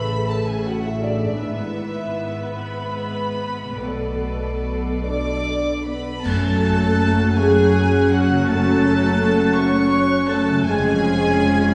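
Opening on two bowed sul tasto violin sections, with a pure, floating melody above a dark, intimate second line, this hopeful, tender cinematic film score moves in a rubato 6/8 at about 47-56 BPM over lush, woody violas, mellow sustained French horn chords, a ringing fingerpicked harp and a rich cello and double bass foundation. It then turns to F# minor at 6.3 s, where a bright accent of clash cymbals and concert bass drum marks the entry of an airy, hollow flute just after a clear clarinet slips in, all heard from further back within a wet scoring-stage reverb.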